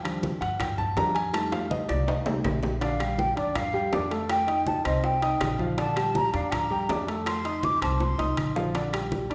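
Set in a recital-hall reverb, this lively, sunny Afro-Cuban jazz excerpt opens with an intimate, up-front concert grand piano, its deep bass and audible action noise clear, taking the lead before a fill hands over to a breathy, hollow flute at 2.8 seconds. The flute sounds distant and mellow, with vibrato and tongued notes. Beneath it, a dark pizzicato upright bass on steel strings anchors the groove, while thick-skinned, low-tuned congas and round, compressed, saturated bongos sit in the background, ringing metal-shell timbales stay close and dry, and very quiet woody claves tick along.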